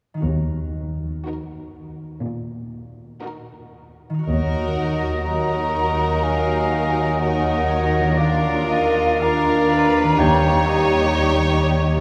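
A concert harp opens this solemn, yearning slow movement with ringing arpeggios, joined almost at once by a portamento-laden cello section and a rich double bass section, before violins carry a focused, vibrato-rich melody over a smooth viola accompaniment and a second violin line from 1.3 seconds. At 4.3 seconds a distant oboe and a dark bassoon enter, followed by a mellow, hollow flute and a bright clarinet in the background; the oboe, flute and clarinet weave second lines while the bassoon adds accompaniment as the harmony shifts from E-flat minor toward an E-flat seventh chord. The rubato orchestra sits in a wet cathedral reverb that lends the whole passage a spacious, devotional glow.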